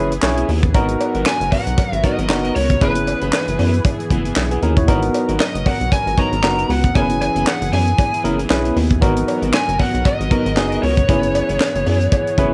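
Danceable and slick, this early-eighties boogie funk excerpt from a home cassette recording sets a tight, up-front drum kit of high-tuned snare, tight kick, hi-hat and handclaps over a rubbery, nasal square-wave bass, with a barky, lightly overdriven tine electric piano comping, a dark, slightly broken-up chorused guitar riff and a thick, warbling detuned unison pad in the background, a metallic cowbell ticking behind, and a dark, cranked lead guitar taking the melody from 1.3 seconds, all in light reverb as the harmony moves between F#9sus4 and G#m9.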